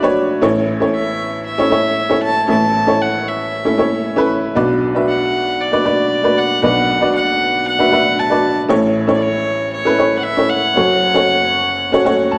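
A rich, nasal fiddle carries the melody up front, its single bowed gut-string voice sounding reedy as it moves between C#5 and A5. Beneath it, a clear upright piano supplies the accompaniment across a range from F#1 to A5, its woody, boxy tone slightly detuned and worn, with short sustain, and it is also placed up front. The piece is a dramatic, earnest pop passage in B minor at 116 BPM in a straight 4/4, cut from a longer work and running about 12 seconds. The harmony moves from A to Bm at 4.6 seconds, returns to A, then settles on F#m, and the piano closes with a brief fill from 11.8 seconds. A large studio reverb gives the dark production a wet, spacious sound.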